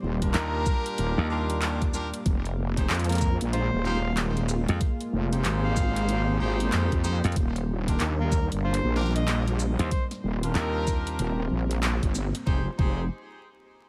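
Crackling with vinyl noise under light digital reverb, this swaggering, funky glitch hop excerpt at 94 BPM swings its sixteenths in F dorian over Ebmaj7 and Fm7, as a heavy, detuned wobble bass and a punchy, foam-muted slap bass sit up front beside a knocking electronic kick and a dubstep kit of huge snare, handclaps, hi-hat and shaker, both overdriven, while a gritty, amplified harmonica with tongue slaps carries the melody through delay, a tight jazz-style horn section adds sidechain-pumped stabs, and a moody sawtooth pad broods in the background with vintage 12-bit sampler grit.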